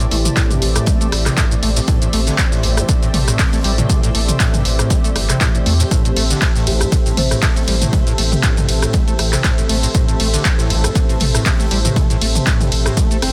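A swung 4/4 groove drives this trippy acid house excerpt. Up front sit a punchy, tape-warm electronic kick and a dry analog drum machine of handclaps, hi-hat, ride cymbal, rim click, shaker and toms, with a very quiet big-room rock kit adding dark hi-hat and snare. A rubbery, resonant acid bass riff with lush chorus and delay sits back behind a round sine sub bass. A detuned sawtooth pad holds smooth sustained chords, and a blurred, evolving granular cloud pad drifts in the background, all pumping to the sidechain, while a woody soft-mallet marimba with delay slips in brief airy phrases at 0.1 and 6.7 seconds over a dense, heavily limited master.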